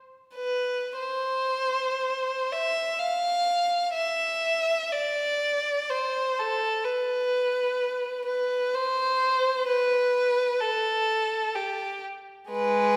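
Classical solo violin in an unhurried 3/4 with free, rubato phrasing, lonely and mournful in mood, taken from a longer piece. A single bowed violin sits up front from 0.3 to 13.0 seconds, its rich tone shaded with vibrato and expressive portamento slides. A wet reverberant hall surrounds the instrument, lending a resonant, churchlike bloom to each note.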